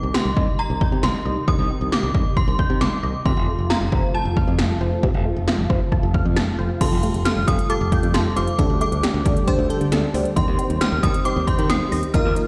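Overdriven 80s electronic pad drums sit up front in this cool, melancholic synth-pop excerpt at 135 BPM, with a punchy kick, gated snare and metallic hats alongside a bright, growly fingered electric bass. A chiming, inharmonic synth melody warbles through ensemble chorus, tremolo and delay above mellow, organ-like sustained chords and a squelchy, resonant blip pluck spinning phased arpeggios in the background, moving from Cm to F. At 6.8 seconds a lush, dreamy FM electric piano with a soft pad layer joins as the harmony shifts through Fadd9, Dsus4 and Cm/Eb, all set in a large, roomy studio reverb.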